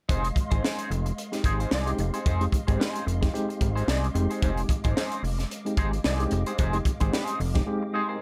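Funk at 111 BPM in F dorian with a 16th-note swing, this hypnotic, driving fragment rides a single Fm7 as a fat, sawtooth-and-square analog bass sits up front beside a crisp fusion kit with a high-tuned snare and gritty, pumping small-room sound, while a dark, picked clean electric guitar runs through wah, a soft, flute-like tonewheel organ holds chords in the background through fast rotary speaker and chorus vibrato, and a reedy, lightly overdriven electric piano with fast tremolo enters with stabs at 1.3 seconds before taking a fill in the break at 7.7 seconds, all under light reverb.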